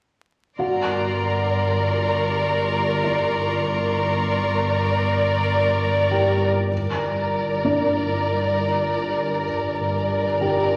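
Ominous and mysterious, this cinematic suspense cue in 5/4 opens at 0.6 seconds on a G minor chord, with an up-front violin section singing a soft-attacked, vibrato line over bowed cellos and a rich double bass section, while a felt-muted upright piano adds dark, intimate texture with audible action noise, high close violins add a rich, bowed texture until 6.4 seconds, and from 1.6 seconds a metallic, nasal, inharmonic drone with chorus hovers in the background, all set in a wet concert hall under a layer of vinyl crackle.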